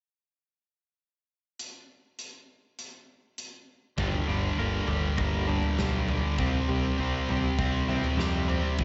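Quiet-loud alternative rock in G minor at 100 BPM, brooding and angsty, cut from a longer piece. A big, punchy rock drum kit with a medium-tuned snare plays up front alone from 1.6 seconds, and at 4.0 seconds it is joined by a double-tracked fuzz guitar riff, a growling overdriven fingered bass, and tremolo-and-tape-echo arpeggios on a clean, compressed twelve-string electric guitar sitting in the background, moving from Gm to C. The home cassette recording has a dull, lo-fi top end, light reverb and small room ambience.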